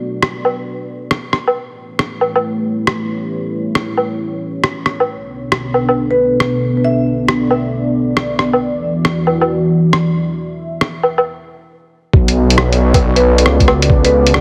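Melancholic and ghostly, this future garage fragment moves at 136 BPM in B minor with a swung sixteenth feel, cut from a longer piece. A deep, moody analog pad of detuned sawtooth and sub-octave tones carries sustained chords from the start, colored by chorus, vintage 12-bit sampler grit and sidechain pumping while a filter sweeps across it through the opening section. A muffled, pitched-down lo-fi drum kit of hi-hat, rim click and woodblock sits up front in a small room, and a woody rosewood marimba with tape echo offers brief melodic phrases around 6.1 seconds and again near the close. After a short break, the second section arrives at 12.1 seconds with a menacing, swelling detuned saw bass and a thumpy, compressed electronic kick. The whole mix has a heavily compressed radio character set in a moderate scoring-stage reverb.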